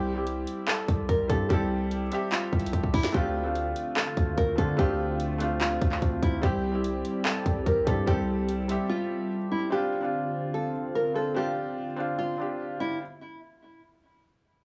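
Brooding and dark, this half-time trap and hip hop excerpt pairs a fingerpicked, full-bodied classical nylon-string guitar melody, colored by cassette tape and tape echo, with a soft, felt-muted upright piano that sits up front with audible action noise. Up-front electronic drums bring a hard-clipped kick, sharp snare, metallic hi-hats and handclaps, with a fill just before a detuned sawtooth pad with chorus and a sub octave fades in slowly at 3.1 seconds. A deep, sine-like 808 bass decays under the kit until both stop at 8.8 seconds, leaving guitar, piano and pad in the small-room ambience of a home cassette recording.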